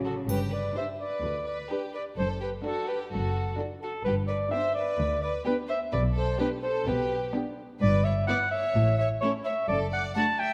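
A cello section with vibrato and portamento opens this playful, whimsical film cue. It is soon joined by a bowed double bass section with a smooth top, a dark, roomy cor anglais up front, a lush violin section in the background carrying a second line, and a triangle heard only from 0.3 to 1.2 seconds. From 0.8 seconds a focused, close violin section takes the melody over a woody, distant viola section playing accompaniment, the harmony moving from G through D/F# and Em/G to A before settling on D/F#, all set in a scoring-stage reverb that frames this quirky, mischievous passage cut from a longer piece.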